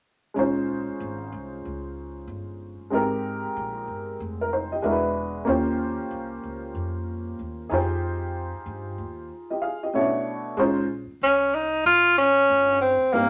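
Swung sixteenths at 94 BPM in 4/4 set a mellow, smoky jazz-hop groove in B♭ Dorian, with a worn, slightly detuned upright piano up front from 0.3 seconds, comping through rich extended chords from Bbm11 to Bbm9. Beneath it, a woody, thumpy pizzicato upright bass holds the low end. At 11.2 seconds, a vintage tenor saxophone with vibrato takes an up-front jazz solo, all set in a moderate studio reverb in this excerpt cut from a longer piece.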